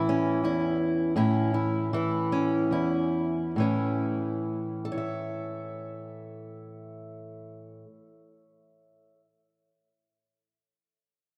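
In 6/8 at 46-57 BPM counted in dotted quarters, slowing through the first 3.6 seconds, this hopeful, warm folk fragment in A major, cut from a longer piece, features a dark, up-front fingerpicked steel-string acoustic guitar spanning E2 to E5, bathed in a lush, wet hall reverb that gives it a big arena sound, moving into a new section at 3.6 seconds before the guitar stops at 9.3 seconds.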